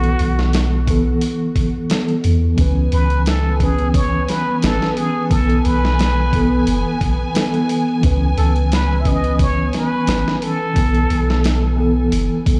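A trip hop groove at 88 BPM in 4/4 rides a light sixteenth-note swing, carried by a dusty, sampler-style drum kit with a thumpy kick, medium-tuned snare and hi-hat, compressed and gritty as if re-recorded in a large room. Underneath, a soft 808-style bass sits up front with a deep, round, sine-like tone and tube saturation, while a mellow reed electric piano shimmers with fast and harmonic tremolo, 12-bit sampler grit, a low-pass filter and tape echo. The harmony moves between B7sus4 and C#m7, giving the piece a melancholic, cinematic mood. Over it, a trumpet with a plunger mute sings a breathy, whispered jazz melody with wah-wah colour, vibrato and tape echo, sounding intimate and close until it stops at 11.8 seconds. From 2.6 seconds a con sordino string section adds veiled, lush sustained chords, and a big studio reverb fills out this short fragment of a longer piece.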